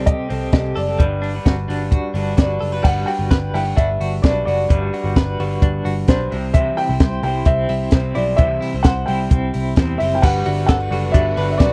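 Youthful and breezy, this short cut from a longer jangly indie pop piece moves at 130 BPM in a straight 4/4 in G major, with a dark, woody upright piano carrying the melody through tape echo over a twangy, slightly broken-up guitar from a small old amp, a compressed clean guitar picking tremolo-laced arpeggios, and a round, foam-muted vintage bass. A compact cocktail drum kit sits up front with a high-tuned snare, punchy kick and rolled-off top, and the chords move from Cm6 to Gmaj7 and C before settling back on Gmaj7. At 10.2 seconds a reedy, worn, slightly out-of-tune electric piano and a very quiet, distant string section with vibrato and portamento join in, all captured in a dry, close 1970s-style studio sound.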